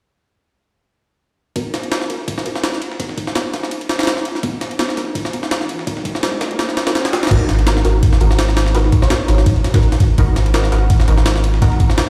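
A gritty, pitched-up jungle drum kit with a thumpy kick, crash and ride cymbals sits up front from 1.6 seconds, backed by a very quiet, tape-warm breakbeat kit and muted, detuned dub chord stabs drenched in phaser, chorus, cassette tape and dub echo as a filter sweeps them over Bmaj7. This dark, nostalgic drum and bass cut at 167 BPM builds with a background riser from 5.4 seconds into a drop at 7.3 seconds, where a deep, round sub bass with tube saturation arrives on G#m7, and a sparkling, bell-like FM electric piano flickers briefly behind shortly after. The mix plays as if through a big sound system in a bare stone room.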